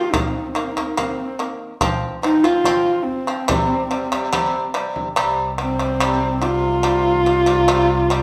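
A straight, unhurried 4/4 pulse underpins this solemn, windswept fragment of Mongolian folk music, cut from a longer piece. Up front, a single bowed horsehead fiddle carries the melody, its dark, husky, woody tone bending through vibrato and portamento. Beside it, a bright, buzzing fretless shamisen picks percussive arpeggios with a plectrum, while a deep frame drum played with soft hands marks time until 5.2 seconds. At that point a rich bowed double bass enters beneath, holding a low drone with a soft attack, vibrato and expressive portamento. The band plays live together in one large studio, and its lush reverb gives the performance a spacious, haunting air.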